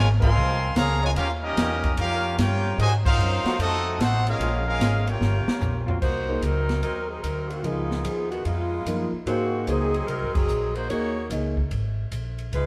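A swinging 4/4 big band groove drives this brassy, energetic jazz excerpt, where a bright, present trumpet section carries the melody over a bright trombone section's second line and a very quiet, smooth-topped trombone pad, a woody upright bass, and an airy drum kit with dark cymbals and a punchy kick, until a drum fill at 5.2 seconds hands the tune to a tight saxophone section with light vibrato at 6.0 seconds, joined by concert grand piano with deep bass, all set back in an echo chamber's reverb.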